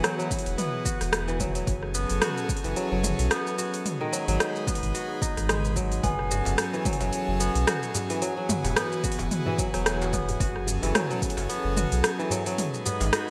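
A crisp, fingerpicked kora sits up front, ringing out arpeggios through a digital delay across this mystical, organic downtempo passage in F# dorian, cut from a longer piece. It moves at 110 BPM in 4/4 with a light 16th-note swing, and the tuning sits slightly low at A4 = 438 Hz. Beneath it, an airy, breathy pad with a detuned, chorused shimmer holds sustained chords that pump against the beat, while a round, sine-like sub bass pumps the same way over chords cycling through Eadd9, F#m and G#m7. The deep house drum kit is overdriven and forward, with metallic hats, rim clicks, shaker and toms in gated reverb, joined from 0.3 s by a punchy, overdriven electronic kick. At 6.0 s a bronze singing bowl enters in the background with a slow, meditative beating, and a tight, cracking djembe follows at 6.3 s, both sitting beneath a bright, 1980s-style digital sheen and a moderate plate reverb.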